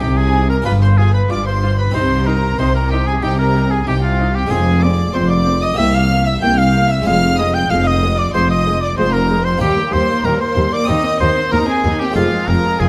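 In a straight, driving 4/4, this dramatic baroque-style concerto movement, cut from a longer piece, features a clear, up-front solo oboe carrying the melody beside an expressive, close violin section high above, while a second violin section adds a smooth supporting line in the background. A round, dry harpsichord and a distant viola section fill out the accompaniment, and the bass comes from a rich, up-front double bass section joined by a warm cello section whose vibrato and portamento give it a singing quality. Moderate concert hall reverb places the ensemble in a spacious room across the full 12.9 seconds.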